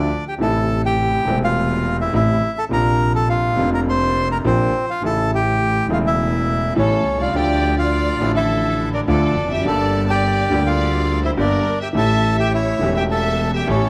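This dramatic, melancholic tango moves at 104 BPM in 4/4 with a rubato feel, in a short excerpt cut from a longer piece. An up-front bandoneon carries the melody with a reedy, bright, airy tone. A clear, intimate grand piano provides the accompaniment, its slightly boxy sound marked by audible action noise. Beneath them, a single bowed double bass holds the bass line with a warm, smooth, even tone and vibrato. At 6.8 s a distant, lush violin section enters with a second line, bowed with soft attacks, vibrato and expressive portamento. The harmony passes from Am through Bbadd9, A, Dm and Gm to A7, captured with close, detailed microphones in a moderate recital hall reverb.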